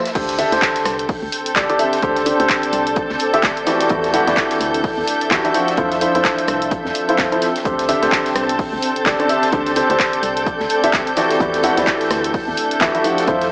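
Gritty, dry and heard as if through a small speaker, this uplifting, joyful piano house fragment drops straight in with a natural-toned, up-front baby grand piano riff pumping against a punchy analog drum machine's claps, rim clicks, hi-hat and crash, a tape-warm electronic kick, a very quiet, airy acoustic kit with a high-tuned snare, a hollow, organ-like FM bass, veiled con sordino violins carrying sustained chords with vibrato and 12-bit grit, and a cloudy granular pad that blurs in at 1.4 seconds.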